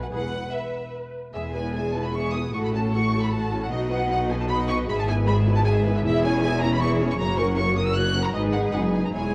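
Set in a graceful triple metre with rubato, this quick, spirited excerpt of a classical-period string orchestra movement carries a lush, soft-attacked violin melody from 0.1 s over a clear, focused second violin line, a distant, expressive viola accompaniment, and a smooth, even cello and rich double bass foundation, all bowed with vibrato and bathed in recital hall reverb and the warbling pitch drift of worn cassette tape.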